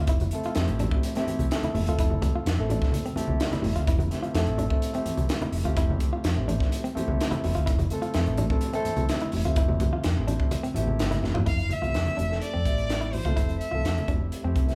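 A moderate large-studio reverb surrounds this band playing live in one room, giving a bright, slick piece of electric jazz fusion in F major, tuned to A4 = 436 Hz, that opens on an Fmaj7 chord at a straight 126 BPM in 4/4. Up front, a crisp fusion drum kit with a high-tuned snare, punchy kick, hi-hat and toms carries a pumping small-room character, while low-tuned congas played with soft hands ring close and dry beside it. A round, amped hollow-body short-scale electric bass sits underneath, as a dark, mellow baby grand piano with long sustain comps and adds a brief fill at 2.9 seconds. A clean, compressed electric guitar, fingered and warm, adds short stabs in a narrow middle register. After a drum fill at 11.1 seconds, a single bowed violin enters at 11.5 seconds with a focused, clear melody and vibrato in the short closing stretch of this cut from a longer piece.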